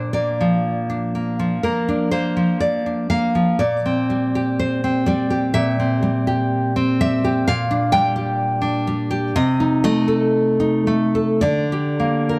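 Melancholic and intimate, this romantic piece for solo classical guitar moves at a slow, rubato 53-65 BPM in 4/4, cut from a longer work. A full-bodied, fingerpicked nylon-string guitar with fresh strings sits up front, its deep classical tone catching finger squeak as the harmony drifts from Bb and C7/Bb into G minor at 7.5 s, then passes through Adim/C to Gm/D. A moderate recital hall reverb and a dark, warm production wrap the instrument.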